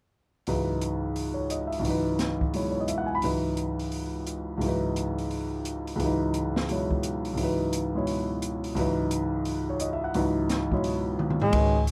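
An up-front concert grand piano, intimate and natural with audible action noise and deep bass, drives this intense, hypnotic modal jazz excerpt in C# minor at a swung 174 BPM, voicing a C#m11 chord over a dark, smooth small-room drum kit with boomy kick, medium-tuned snare, hi-hat, ride, toms, dark cymbals and a rolled-off top. A drum fill at 11.2 seconds ends the section, and a vibrato tenor saxophone enters up front at 11.4 seconds on a G#3, with a woody, pizzicato upright bass joining on C#2 at 11.5 seconds. Light reverb gives the recording a gentle sense of space.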